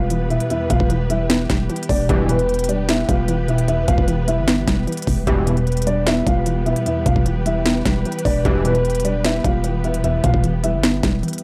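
A dry, gritty hardware recording with transformer saturation and a digital ambience frames this menacing, dark trap excerpt at 151 BPM in a half-time feel, sitting on E minor in E phrygian. A dark, boxy concert grand carries the melody over a warbling, lo-fi pluck in the background and lush, bowed symphonic strings holding sustained chords, while a growling, buzzy 808-style bass and an up-front trap kit with a knocking kick, sharp snare and crisp hats drive the low end. Short, edgy stabs from a bright sync-sweep polysynth with a nasal sweep, chorus and analog delay cut in at 2.1, 5.3 and 8.5 seconds.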